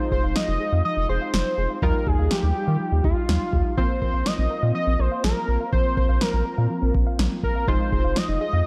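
A dark, warm production sits in a moderate hall-like reverb on this short, melancholic and nocturnal synth-pop excerpt at 123 BPM, moving through Fm7, Ebadd9 and Bbsus2 before returning to Fm7 at 7.7 seconds. An up-front, bold, retro octave-doubled lead with vibrato, chorus and analog delay carries the melody over a punchy, funky polysynth comp with detuned sawtooth edges. Beneath them a soft pluck plays gentle arpeggios in the background, a round, nasal analog bass holds the low end up front, and an overdriven electro drum machine drives a deep kick and punchy snare.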